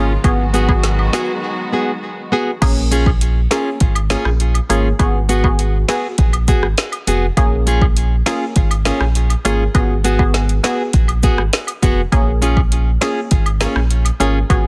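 A straight 4/4 dancehall groove at 101 BPM drives this hypnotic, tough cut from a longer piece in Bb phrygian, built on an electronic afro-pop drum kit with a deep kick, woody snare and metallic hats, up front beside a full sine sub bass with octave, while woodblock and cabasa sit close and dry in the background. A crisp digital wavetable chord stab with a filter pluck and a fingerpicked flamenco guitar, its arpeggios carrying delay, move between Abm7 and Bbm7, and an earthy bowed string section with light vibrato and sidechain pumping holds sustained chords from the start until 2.6 s, through the break from 1.4 s. The small room ambience and dense, heavily limited modern master keep the sound tight and forward.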